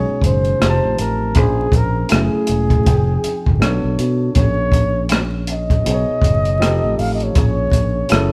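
A breathy, dark flugelhorn carries a close-miked, whispered melody with vibrato and scooped notes from the first moment, over a barky tine electric piano through a combo amp and a punchy fingered electric bass, with a compact cocktail drum kit joining at 0.2 s on hi-hat, kick and rim click. This smooth, introspective neo-soul R&B moves at 80 BPM in 4/4 with a swung 16th-note feel in Bb dorian, cycling through chords such as B69, F7, Bbm7, Gbm9 and Fm9. The band plays live in one stone room with moderate reverb, the rolled-off drums and the bass sit up front, and vinyl crackle runs beneath this brief cut from a longer piece.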